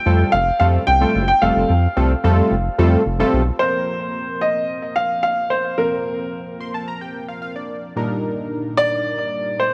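Dance-pop at 110 BPM in Bb major, this summery, euphoric excerpt opens on a drop with a smooth, vintage grand piano melody wrapped in tape echo over mellow, detuned analog keys with chorus and a deep, round analog bass that sounds only until 3.5 seconds, before the keys add a fill from 6.3 to 8.0 seconds as the chords move from Fadd9 through Bbsus2 to Ebmaj7/Bb in light small-room reverb.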